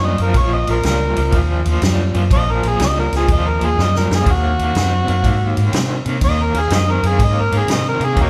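This short passage, cut from a longer piece, sounds like a band playing live in one room, with a moderate, large studio reverb around the players. It's a soulful, smoky electric blues shuffle with a swung feel, and an up-front harmonica carries a jazz-style solo throughout, its amplified, gritty tone shaped by light vibrato, tongue slaps and scooped notes. Beneath it, a raw garage guitar plays a bright, picked riff colored by overdrive and tremolo, while a vintage fingered electric bass sits up front with a dark, round, punchy, foam-muted sound. A natural-sounding vintage drum kit enters at 0.2 seconds with a tight kick, a medium-tuned snare and ride cymbal, then plays a fill from 3.8 to 4.3 seconds, after which the harmony moves from its opening minor chord to a new minor chord.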